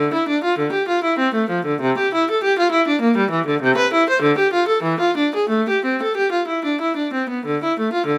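A lone bowed viola opens the recording, sounding clear and placed up front, with a grave, solemn character that suits this baroque-style suite movement for unaccompanied viola. The single player moves in 3/4 with a flexible, rubato feel, the pulse drifting between about 86 and 101 BPM. The line ranges from C3 up to C5, its tone intense and coloured by vibrato, and it settles into A minor from 3.6 seconds. Close, detailed microphones capture the instrument's grain, while a light reverb lends a touch of space around it. Cut from a longer piece, the passage lasts just over 8 seconds.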